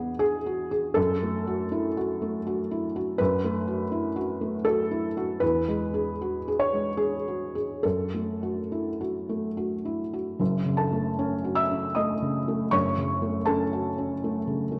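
A felt-muted upright piano plays the recording alone, performing a wistful, melancholic piece of neoclassical minimalism in F# dorian. The tone is soft, dark and intimate, with thick felt dulling each note, short sustain and audible action noise, and the instrument sits up front. It moves in 3/4 with a rubato feel, drifting between 68 and 82 BPM. The harmony begins on a rootless C#m7/E, settles on F#m, moves to E69 at 5.4 seconds and returns to F#m, with the music spanning F#1 to E6. A second section begins at 10.4 seconds and runs until the fragment, taken from a longer piece, ends at 14.8 seconds. The sound is wrapped in a wet recital-hall reverb and the worn, warbling character of old cassette tape, with a warbly pitch drift.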